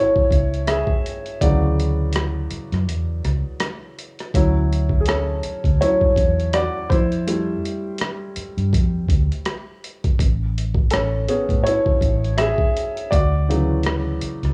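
A woody, smooth upright piano leads this sensual R&B and neo-soul fragment with a brief break at 2.9 seconds, backed by a gritty, thumpy, pitched-down boom bap sampler kit of hi-hat, kick and rim click and a dark, round, foam-muted electric bass, the recording wrapped in worn, warbling cassette-tape drift and small-room reverb over maj9 chords.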